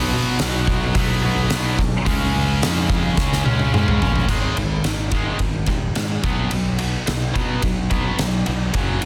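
A straight 4/4 pulse at 108 BPM drives this brooding, angsty quiet-loud alternative rock fragment, cut from a longer piece. A tight, bright distorted guitar, double-tracked and up front, plays the riff from the start, moving through B5 and Db before shifting to Ab5 and back to B5 in the second section at 4.3 seconds. Beneath it, a picked electric bass carries a warm, punchy fuzz with overdrive, sounding both direct and amped. An oversized, low-tuned acoustic drum kit joins at 0.4 seconds, with a fat snare, punchy kick, crash, ride, hi-hat and toms set in a pumping stone room, and it plays a fill from 3.2 seconds into the new section. The mix is dry, with little reverb, and the master is dense and heavily limited in a modern style.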